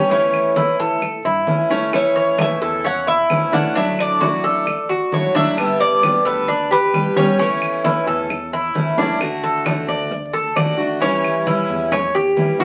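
A bright, metallic Cuban tres with double strings leads this sunny, relaxed excerpt of Cuban son and guajira, picking a melody that stops at 8.7 seconds, while a second tres sits up front, playing arpeggios throughout. A picked steel-string acoustic guitar, also up front with a concert-grade tone, carries the accompaniment at a steady 132 BPM in straight 4/4, in D major. Damped, low-tuned congas with a thin skin and a compressed, saturated edge are played with soft hands, and woody claves click close and dry in the background. A glossy, retro chorused synth bass hums mellow and sustained beneath it all, its pulse-wave and sawtooth tone evolving through a filter sweep. A drum fill at 8.8 seconds leads into a new section at 9.2 seconds, as the harmony moves from A through Dadd9 and Gadd9 to a closing D and A7. A club reverb and the crackle of a very old 78 rpm record give the whole cut a nostalgic, dance-hall glow.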